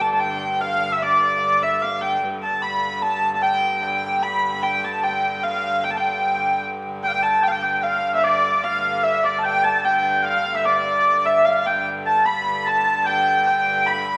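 Bathed in a wet concert-hall reverb, this rustic, festive medieval dance in triple time is cut from a longer piece and opens with a nasal, smooth hurdy-gurdy carrying the melody up front over a second hurdy-gurdy holding a clear, biting drone low beneath it. At 7.0 seconds, as the opening section repeats, a bright folk-style shawm joins with a second line in the same high register as the melody, its vibrato and scooped notes adding a lively edge to the wheel-bowed, keyed tone of the hurdy-gurdies.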